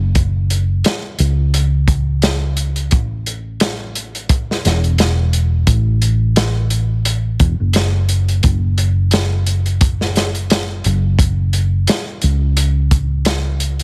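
A hollow-body short-scale electric bass, played with the fingers, opens with a dark, round amped tone, sitting up front in a low register, before a crunchy breakbeat drum kit of kick, snare and hi-hat joins at 0.1 seconds. This cinematic, melancholic trip hop cut moves at 87 BPM in F# minor with a swung sixteenth-note feel. The drums are saturated and gritty with a tight kick, a medium-tuned snare and a rolled-off top, and the whole excerpt is dry and heavily compressed, like a radio broadcast.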